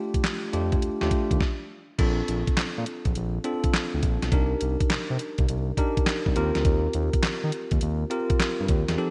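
A bell-like tine electric piano opens this punchy, confident new jack swing excerpt, joined by a smooth sawtooth synth bass with ring modulation and a clean 12-bit drum machine with a thumpy kick, fat snare, handclaps, hi-hat and crash, all up front in bright 1980s-style digital production with lush hall reverb, pausing from 1.4 to 2.0 seconds before swinging through Bbmaj7, Cm7 and Eb6 chords.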